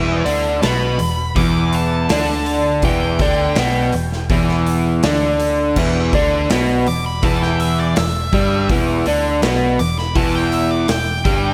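A straight 4/4 pulse at 82 BPM drives this heavy, gritty slice of blues rock power trio and southern rock, cut from a longer piece and sitting on a single E minor chord. A big rock drum kit comes in at 0.3 seconds with crash cymbal, hi-hat, a medium-tuned snare and a boomy kick, recorded acoustically in a studio room. Up front, a crunchy overdriven guitar plays the riff in a low register, double-tracked and picked, with a slapback echo on its warm tone. Beneath it, a vintage electric bass, foam-muted and picked, gives a dark, round, amped bottom end. Riding high and quieter in the mix, a nasal lead guitar with a parked wah solos throughout, its bright overdriven line reaching up to D6. A moderate, lush hall reverb with a 2.6-second tail wraps the trio in a big arena sound.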